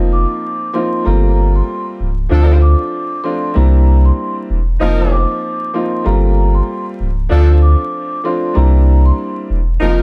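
Dark, warm production with vinyl crackle and small room ambience frames this moody, gritty hip hop groove in G minor, taken from a longer piece and set at 96 BPM with a swung 16th feel. A deep, full sub bass with octave sits up front beneath a woody upright piano tinted by cassette tape, while a mellow, ringing vibraphone played with soft mallets, slow motor vibrato and slapback echo carries the melody up high. From 2.3 s a punchy horn section adds stabs with light vibrato and slapback echo over chords cycling through F7sus4, Gm11, Dm7 and C9.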